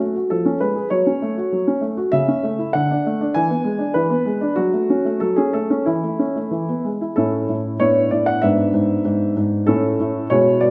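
Graceful and cheerful, this short passage from a classical-period piano sonatina in A major moves at 96 BPM in 2/4, shaped with a flexible rubato. A baby grand piano plays solo throughout its 10.7 seconds, ranging from G#2 to G#5 with an open tone, long sustain and an up-front presence. The opening phrase travels through C#7/E#, F#m, A/C# and D before reaching E7, then settles back through F#m and A/E onto E. At 7.2 seconds a second section begins on A, moving through Bm7/A and E7/G# to close on A at 9.7 seconds. A reverberant recital hall surrounds the instrument.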